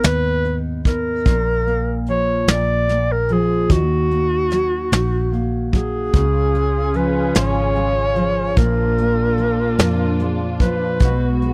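Melancholic and aching, this slow six-eight pop ballad moves at 49 BPM in dotted quarters, with a breathy, subtone clarinet carrying the melody up front in a jazz style, its soft-attack notes scooped and shaded with vibrato. Beneath it, a double-tracked nylon-string guitar offers full-bodied, thumb-plucked accompaniment with a touch of finger squeak, a foam-muted electric bass sits round and punchy, and a brushed kit of hi-hat, kick and snare plays close from a small room. At 6.1 seconds a dark, woody studio string section enters with lush bowed chords, and the recording has a dry, close 1970s-style studio sound, cut from a longer piece.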